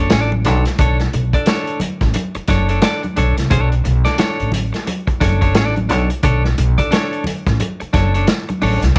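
Driving and cool, this funk excerpt sits at 88 BPM in 4/4 with a 16th-note swing, holding on a single Bm9 chord in B minor for its nine seconds. An upfront upright bass, plucked pizzicato on steel strings, gives a woody, growly low end between F#1 and C2 and stands as the loudest part. A clean electric guitar plays accompaniment between D4 and D5, its picked tone bright, twangy and compressed, also placed up front. A vintage drum kit enters at 0.1 seconds with kick, snare, hi-hat and crash, sounding lo-fi and muffled in a small room, with dark cymbals, a tight kick, a medium-tuned snare and a rolled-off top. Congas arrive at 0.3 seconds and drop out at 8.8 seconds, their hard-handed, thin-skinned sound heard close and dry in the background, while a studio reverb gives the recording its space.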